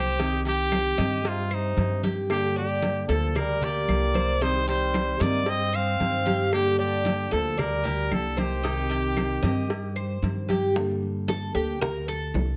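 The bright trumpet leads up front with a smooth-topped, vibrato-laced pop-style melody in this warm, danceable excerpt of Cuban son and guajira, set in G minor at 114 BPM in a straight 4/4. Underneath, a woody, thumpy upright bass sits prominently with pizzicato lines, while a dark, full-bodied nylon-string guitar is thumb-plucked in the deep classical manner and a picked Cuban tres adds metallic, double-string arpeggios. A clear, vintage-toned trombone supplies a second line in the background from 1.3 seconds, and the percussion stays back as well: thick-skinned, damped congas struck with hard hands, tight high-tuned cowbell and bongos, and dry, woody claves. The harmony moves between Cm and Gmadd9, and when the trumpet, trombone and claves drop out at 10.2 seconds, the tres takes a short solo from 10.8 seconds. Close, detailed microphones and light reverb keep the sound intimate.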